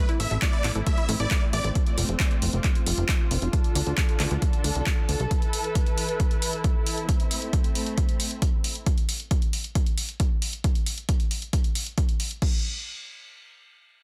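An overdriven, punchy electronic kick, up front and re-recorded in a large room, drives this soaring, emotional uplifting trance excerpt at 135 BPM in A minor, alongside an analog drum machine with the same large-room character, likewise pushed into overdrive, playing crash, handclaps and hi-hat. A funky, wave-folded analog bass runs until 5.3 s, while a veiled, con sordino string section holds dark sustained chords through an Am–F–Dm–Esus4 progression. For the first 1.7 s, a huge, detuned supersaw lead sings a brief melody alongside a round, chorused analog pluck arpeggio with a filter sweep in the background. The lead, pluck, bass and strings all pump to the sidechain, and dub echo trails the lead and pluck, all within a dense, heavily limited master with little reverb.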